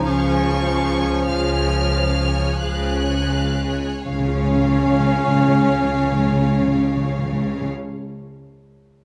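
A serene classical passage in Db major opens at a slow, rubato pace of 41-50 BPM. A focused, vibrato-laden violin section sings the melody high above a clear second violin line and a warm solo clarinet, while a dark, smooth-topped viola section provides accompaniment and a lush double bass section and an intense cello section play the low Db beneath a bright, ringing concert harp playing arpeggios in the background. The tempo slows through the first 4.1 seconds, and at 4.1 seconds round, soft-malleted timpani enter, all set in light reverb with close, detailed microphones in this cut from a longer piece.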